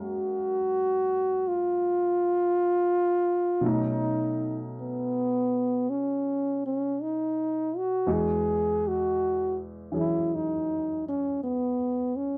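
A mellow, close-miked trombone sings the melody with light vibrato and a punchy, forceful edge over a baby grand piano of natural tone and short sustain, set lower in the mix, in this intimate, wistful swung jazz ballad at 54 BPM, moving from F#maj9 through B9 to Emaj9 in a dry, close 1970s-style studio sound with light reverb.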